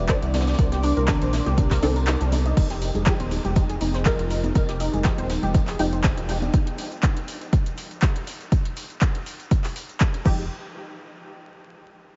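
A swung 4/4 groove drives this hypnotic, late-night deep house excerpt. An overdriven, up-front electronic kick leads a drum kit of handclaps, crash and metallic hats, with brushed tambourine and snare, ringing congas and a grainy, very quiet egg shaker tucked behind. Underneath, a round, sidechain-pumped analog bass and muted dub chord stabs, soaked in phaser and diffuse delay, carry a warbling, lo-fi pluck arpeggio and a moody pad that holds sustained chords at the start, while a filter sweep moves across the stabs and the kick drops out at 2.1 s. Most parts fall away around 6.5 s, leaving kick, kit and shaker in a dreamy reverb haze flecked with vinyl crackle before bass and stab return briefly near 10.3 s.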